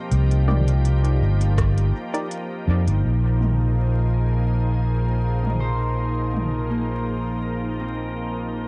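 Ambient dub with a meditative, spacious mood, cut from a longer piece and set in a lightly swung 4/4. A soft, organ-like pad sustains chords throughout, its pure, detuned tone thickened by ensemble chorus and reverb and roughened by a vintage 12-bit sampler grit, while a ringing, fingerpicked Celtic harp plays arpeggios in the background through a low-pass filter and dub echo. Up front, a growly, amped fingered electric bass carries the low end, and an organic electronic drum kit of crisp hats, rim clicks and toms, filtered and sent into dub echo, plays until about 6.5 seconds. Early on, a muted sawtooth chord stab with a quick filter pluck adds mellow, chorused accents from 0.5 to 2.3 seconds, and a muffled, overdriven electronic kick thumps once in the background. After the chords move from Cm7 to Bb5 at 3.0 seconds, a glassy texture of drifting sine overtones settles in behind the harmony from 3.7 seconds, all within a dark production softened by vinyl crackle.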